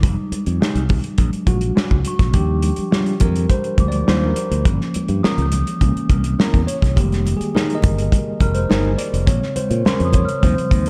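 A tine electric piano, heard through its built-in speakers, leads this silky slice of lush 1970s-style soul and holds the solo role for the full 10.9 seconds over extended chords such as Fm9, Ebmaj9, C7b9 and Bbm9. Beneath it, a modern fingered electric bass sounds bright, direct and growly, while an acoustic soul drum kit sits up front with a tight kick, medium-tuned snare, hi-hat and a rolled-off top. Very quiet small-room congas with a thin skin add light percussion, and a glockenspiel struck with rubber mallets rings soft and bell-like in the background. A mellow electric guitar plays a clean riff from 0.6 to 10.1 seconds, tucked into the background. Light studio reverb and a dark, warm production keep the straight, smooth groove intimate, and the clip is cut from a longer piece.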